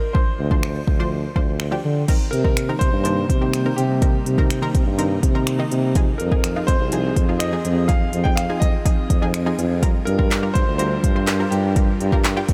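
Energetic and bittersweet, this dance-pop excerpt in C minor at 124 BPM sets a clear grand piano melody with delay and audible action noise over a chorused analog pluck in the background, an up-front deep house drum kit with a deep kick and woody snare, a punchy tuba bass with vibrato entering at 0.4 seconds, and an airy, breathy pad that arrives at 2.1 seconds as the chords move through Cm7, Fm7 and Gm7, the pluck, tuba and pad all pumping under sidechain within a light digital reverb.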